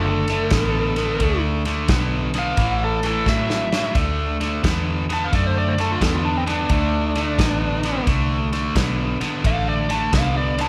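Soulful and rollicking, this electric blues shuffle excerpt at 87 BPM in D mixolydian features a biting, overdriven lead guitar soloing over a cranked, up-front stack guitar riff, a round, punchy, foam-muted fingered bass, and a soul drum kit with tight kick, medium-tuned snare and dark ride cymbal that joins at 0.3 seconds and drops a fill from 3.3 to 3.9 seconds, all captured as a band playing live in one room with a large studio reverb.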